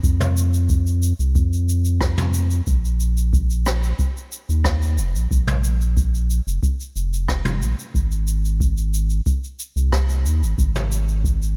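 From the first moment, a round sine sub bass, a deep electronic kick and a brushed jazz kit enter together in this sunny, smooth sunset chillout excerpt, moving at a relaxed 91 BPM in a straight 4/4. The sub bass sits up front, mellow and sustained with a fast attack, ranging from F1 to F2 and carrying the low end until 11.6 seconds. The kick is an analog electronic one with a tape-warm character, re-recorded in a large room, which gives it a roomy depth as it sits beneath the groove. Set lower in the mix, the acoustic brush kit adds a natural studio-room texture, with rim clicks, shaker and toms sprinkled through the pattern. The overall sound is dry, with little reverb, and the whole passage stays in a single easygoing section.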